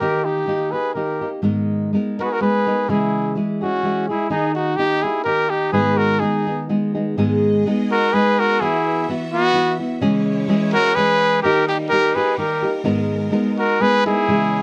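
Mariachi-style Mexican folk in a proud, festive, swung 3/4 at 126 BPM in G# minor, with a present, up-front classical trumpet carrying the melody over a smooth-topped second trumpet line and a dark, fingerpicked nylon-string guitar, while a lush, vibrato-laden violin section enters at 7.2 seconds with sustained chords in the background, heard through close, detailed microphones and light reverb.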